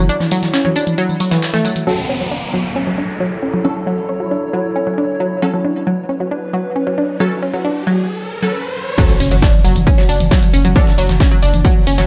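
A straight, driving 4/4 pulse carries this dark peak-time techno excerpt, built around a bright, nasal analog pluck riff that sits up front throughout, its detuned sawtooth tone colored by chorus, phaser, overdrive, tape echo and sidechain pumping. Beneath it, a warbling, nostalgic lo-fi pad of detuned square, triangle and sawtooth waves drifts in with a slow attack, mellow and soaked in chorus, phaser and reverb, until 8.1 s. Two drum kits open the piece briefly: a gritty, tape-warm sampler-style breakbeat kit with high-passed hi-hat, shaker and snare, and an overdriven techno kit of crash, hi-hat, ride, tambourine and toms with pumping on its cymbals and percussion. In the long build that follows, aggressive unison rave stabs with a moving notch, reverb and digital delay join the pluck under filter sweeps, while a downlifter and a riser lead toward the drop. At 9.0 s an impact lands as both drum kits return alongside a heavy, overdriven electronic kick, and a deep, thick, saturated sub bass with a low-pass filter and sidechain pumping rolls in just after, all set in a light reverb.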